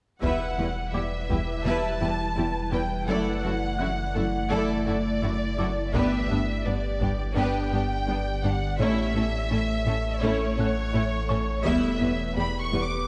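A cinematic hybrid of orchestral and electronic film score, this vast, relentless passage sets a lush violin section singing the melody with a focused vibrato over a smooth second violin line, expressive viola and cello sections with soft attacks, a round sine sub bass, a glassy FM pad with ensemble chorus, and a clear baby grand piano with digital delay in the background, while a heavy-sticked taiko ensemble strikes at 0.2, 5.9 and 11.7 seconds, all set in a concert hall reverb.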